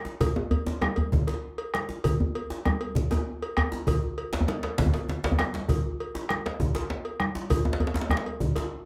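Set in a wet small room with a short reverb, this earthy, driving West African drum ensemble rolls along in 12/8. A warm, deep djembe sits up front while a second djembe with buzzing metal rattles and hard hands sounds distant, as if in a large room; bright, thin-skinned congas, a round, band-limited bombo with a vintage character, and a metallic cowbell fill out the live-room groove. All five parts enter within the first half second, and a drum fill breaks through from 4.9 to 5.7 seconds before the fragment is cut from the longer performance.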